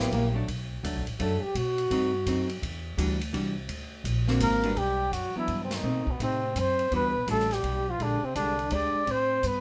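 A swinging 3/4 lilt at 168 BPM drives this short cut from a longer small-group jazz piece in G major, its mood warm and sophisticated with a touch of bop harmony. The trombone opens with a solo over the first 4.8 seconds, its mellow, punchy tone close-miked and forceful, with scooped notes. Beneath it, a dark, clean hollow-body electric guitar comps with fingered chords, the woody pizzicato upright bass holds down the low end, and a polished, airy drum kit with dark cymbals, a medium-tuned snare and a punchy kick swings on hi-hat and ride. At 4.4 seconds the flugelhorn takes the melody, distant and roomy yet up front, with a soft attack, vibrato and scoops, while the trombone continues as a second line and the band hits an accent at 5.7 seconds. The harmony moves through rich colors such as B7b9, Em9, Daug7 and Bb13 before settling on Am7, all wrapped in light reverb.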